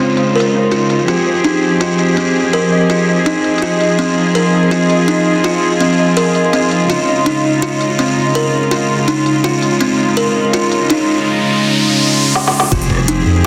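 An earthy chamber cello section, bowed with light vibrato and placed up front, holds sustained chords that pump against a sidechain in this dark, spacious half-time drum and bass passage at 165 BPM in F minor, cut from a longer piece. Beside it, a buzzing kalimba plays close-miked, woody arpeggios through a low-pass filter and delay, while a bright, tempo-synced triangle texture pulses softly in the background with chorus and its own reverb. From 0.2 seconds, an organic electronic drum kit, overdriven and re-recorded in a small room, adds smooth hi-hats, rim clicks and a woody snare. The harmony moves between Dbadd9 and Fmadd9, and a riser enters at 10.7 seconds, followed by a short drum fill. At 12.7 seconds, an impact lands with a knocking electronic kick and a deep, saturated sine sub bass, all set in a lush hall reverb and a dense, heavily limited modern master.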